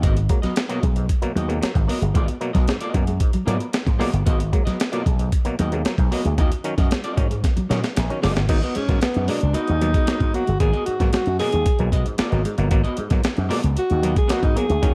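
Hypnotic and driving, this funk groove in G# minor moves at 114 BPM, with a gritty, compressed breakbeat kit and a punchy slap bass through an envelope filter sitting up front, while an overdriven auto-wah clav stabs, a dark hollow-body jazz guitar comps, and a mellow fingered guitar riff sits in the background. After a drum fill at 7.4 seconds, a breathy alto saxophone with light vibrato takes the solo at 8.5 seconds over a return to G#m9. The production is dark and warm with light reverb and digital ambience, and the piece is cut from a longer track.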